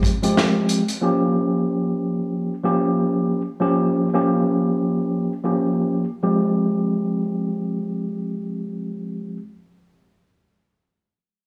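A swung sixteenth-note feel in 4/4 opens this reflective, dark boom-bap hip-hop excerpt, carried by a vintage acoustic drum kit whose punchy kick, medium-tuned snare and hi-hat sit up front in a small, pumping room with a rolled-off top, until the drums stop at 1.0 s. A mellow tine electric piano provides the accompaniment from the start to 9.4 s, playing in a low-to-middle register with a clean, warm tone heard through its built-in speakers. Its sound is coloured by cassette tape and narrowed by high-pass and low-pass filtering. The harmony moves from a minor add-nine chord to a half-diminished seventh, then returns to the opening chord at 6.2 s as the piece enters a new section. Light reverb and small room ambience give the recording a close, intimate space.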